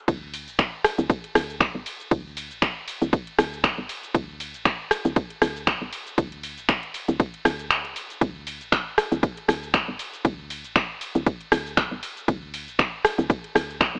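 The recording has a dry, gritty hardware sound, with transformer saturation, vinyl crackle and an AM-radio colour under a light reverb. It is a moody, warm deep house piece in 4/4, cut from a longer work, with a gentle swing on the sixteenths. A punchy, tape-warm electronic kick sits up front. A layered house kit of finger snaps, rim clicks, shaker, ride cymbal and metallic hi-hats sits beside it. Underneath, a round, woody FM bass with a fast attack and dark decaying notes moves between A1 and D2, colored by tube saturation and pumping against the sidechain. The kick briefly drops out from 7.7 to 8.2 seconds, leaving the bass and kit to carry the groove before it returns.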